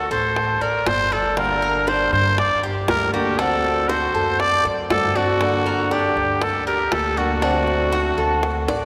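A Cuban son and guajira excerpt in G harmonic minor at 119 BPM, nostalgic in mood, led up front by a raspy, growling trumpet with vibrato and scooped notes, over metallic arpeggios from the double-strung Cuban tres and a woody, thumpy pizzicato upright bass on gut strings. Tight, high-tuned bongos played with hard hands sit dry in the background from 0.4 seconds, and a boxy picked archtop guitar adds accompaniment from 1.4 seconds as the harmony moves between D7 and Gm(add9). The whole is bathed in a cathedral-like reverb from a church or concert hall, with a drum fill at 8.7 seconds.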